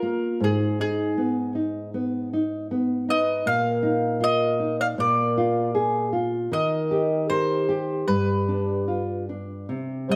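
A fado-style ballad at 78 BPM in 4/4, played with a free rubato feel and tuned to A4 = 444 Hz, this short cut from a longer piece sounds passionate and longing as a round, up-front mandolin with picked double strings carries the melody, a pure, breathy, dark sine lead with chorus, vibrato and gliding portamento sings a second line, and a thumb-plucked classical nylon-string guitar, also up front, supplies accompaniment over Abm, Bbsus4, Bb7, Eb and G7, the three parts sounding together throughout inside a moderate recital hall reverb.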